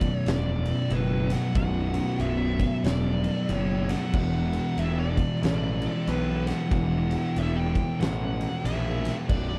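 A thick, double-tracked fuzz guitar sits up front with a warm, distorted riff, alongside a growly, overdriven picked bass and an oversized low-tuned drum kit with a fat snare, punchy kick and gritty, pumping room sound on kick, snare, ride and crash. This heavy, sludgy stoner and doom metal excerpt moves at 93 BPM in 4/4 with a swung eighth-note feel, while a dark fuzz lead guitar carries the melody through wah, distortion and tape echo. The mix is dry, with the harmony shifting from B minor to an E power chord at 4.1 seconds.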